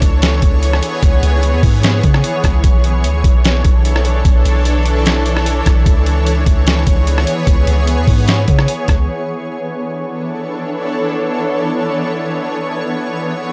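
A dry, gritty recording with transformer saturation carries this hazy, ethereal cloud-rap excerpt at 149 BPM in a half-time 4/4 feel in B dorian, where a muffled, pitched-down sampler-style drum kit with a thumpy kick sits up front beside a soft, round 808-style sine bass that decays darkly, both dropping out around 9 seconds to leave a shimmering, detuned granular pad with an octave-up sparkle, chorus, reverb and sidechain pumping, drifting between C#m7 and Bm11 alone until 13.5 seconds.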